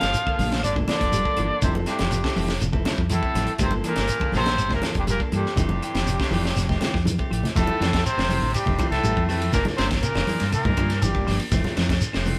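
Funky and intense, this afrobeat cut rides a straight 4/4 groove, played live by a band together in a moderate stone room. A breathy trumpet with a soft attack and vibrato carries the melody, while a raspy, gritty baritone saxophone sits low in the background and a very quiet, edgy tenor saxophone adds a further second line; all three horns stop at 11.4 seconds. Underneath, a dark, clean electric guitar plays fingered arpeggios, and a bright, twangy guitar at the edge of break-up adds picked stabs through spring reverb. A round, punchy fingered bass and an up-front funk kit with a high-tuned snare and tight kick anchor the rhythm, joined by a grainy shekere, very quiet woody claves and ringing congas played with soft hands. A drum fill at 7.1 seconds leads into a new section at 7.6 seconds, and the harmony moves between Gm9 and Fmaj9 before shifting to Gm7 and Fmaj7.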